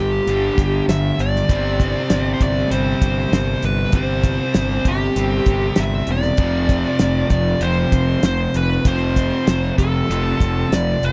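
This short classic rock excerpt opens with two picked, overdriven rhythm guitars playing riffs low in the mix. A growly, fuzz-soaked fingered electric bass sits up front, along with a dark, smooth lead guitar carrying the melody through its overdrive. At 0.3 seconds a cloth-damped, thuddy acoustic drum kit joins on hi-hat, tight kick and a medium-tuned snare, its top end rolled off and its sound close and small-roomed. The harmony moves from G5 to C5/G and then to F at 6.4 seconds, all at a straight, driving 98 BPM in 4/4 with a sunny mood. The whole recording is dry and close, in the manner of a 1970s studio.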